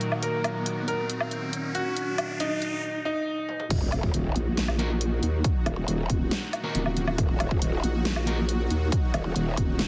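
A heavily compressed, radio-like sound in a lush hall opens this chaotic, aggressive half-time wobble dubstep fragment, where a bright concert grand piano melody with dub echo rides over a detuned supersaw pad pumping against the sidechain, a riser and a dubstep kit with a huge snare until a drum fill at 3.5 seconds tips into the drop at 3.7 seconds, when a punchy, tape-warm kick and a saturated growl bass join up front, soon followed by a nasal vowel-sweep wobble bass, while distorted fuzz guitar stabs sit in the background.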